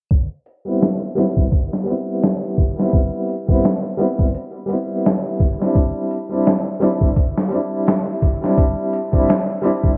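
Smoky and cinematic, this trip hop excerpt moves at 85 BPM in 4/4 with a 16th-note swing of 57%. A sampler-style drum kit of kick, snare and hi-hat sits up front from 0.1 s, its thumpy kick and medium-tuned snare compressed, pitched down and muffled, with overdrive and the feel of being re-recorded in a small room. An upright piano enters at 0.6 s as accompaniment between G3 and E4, woody and smooth with long sustain, coloured by tremolo, vintage 12-bit sampler grit and a low-pass filter that sweeps across the whole passage. The harmony rests on Cmaj7/G before moving to Cadd9 at 5.8 s. A moderate plate reverb and bright 1980s-style digital production, itself low-pass filtered, frame the two parts.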